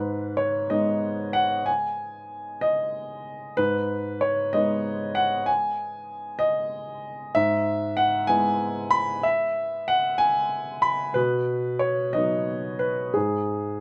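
Lightly reverberant and close, this short fragment of reflective, wistful neoclassical minimalist piano features a solo upright piano with a woody, up-front tone, played with rubato in a slow 6/8 at 63 BPM in G# minor, moving from G# minor through E over G# to B before the harmony drops away at 13.1 seconds.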